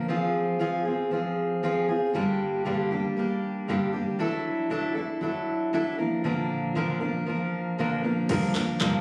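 A fingerpicked steel-string acoustic guitar carries this heartfelt, easy-going acoustic pop passage, its jumbo body sounding full-bodied and up front with the warm tone of fresh strings. Set at 117 BPM in 4/4 with a light sixteenth-note swing, the guitar moves through Fm, Gm, Dadd9/F# and Bb in Bb mixolydian, arriving on Gm7 at 8.3 seconds. At that moment a minimal click drum kit appears briefly until 8.9 seconds, an electronic, produced kit with a soft kick, crash cymbal, handclaps and tambourine, overdriven and re-recorded in a large room. The whole piece has the candid, roomy character of a phone recording, with club reverb and compression around the parts. It is cut from a longer piece, ending shortly after the drums arrive.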